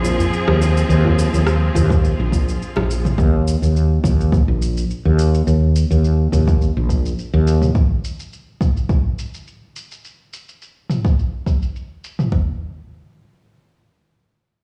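A growly, woody fretless electric bass sits up front in this mystical, meditative organic downtempo cut from a longer piece, its round, hollow-bodied tone pumping under sidechain across Fm7 and then Eb5 before it drops out at 7.7 seconds. Over it, a lush studio string section holds bowed, vibrato-rich chords with a smooth top, also pumping, and stops at 3.1 seconds. A filtered, overdriven electronic kit of rim clicks, shaker and toms runs beneath at 105 BPM in 4/4 with a light 16th-note swing, while a hard-handed acoustic djembe sits in the background early on. From 1.9 seconds a second layered, overdriven kit brings a deep kick and toms up front, continuing once the harmony falls away. The mix sounds as if played on a big sound system in a bare room, with large studio reverb around it.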